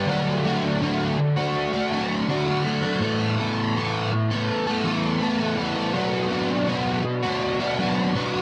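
Kaleidoscopic and hazy, this short rock passage is cut from a longer piece and moves at a straight 82 BPM in 4/4, in D major. An overdriven semi-hollow guitar carries it alone from start to finish, picked and double-tracked and sitting up front, its hollow-body tone ranging from A2 to A4. Flanger and dub echo colour the guitar, adding to an echo-heavy mix set in a moderate spring reverb with a digital ambience. The harmony moves from D to Asus2 at 3.0 seconds and on to Bm at 5.9 seconds, and the guitar plays through to 8.4 seconds.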